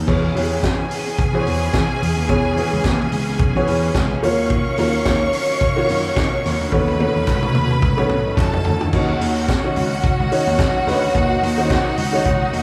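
A swung sixteenth-note disco groove drives this danceable snippet, with an up-front vintage drum kit of punchy kick, high-tuned snare and dark cymbals, a gritty overdriven slap bass, boxy grand piano chords, sustained bowed strings beneath a lush second string line, and very quiet, distant handclaps, all playing live in one large reverberant room, as a drum fill at 6.7 seconds leads into the second section at 8.9 seconds.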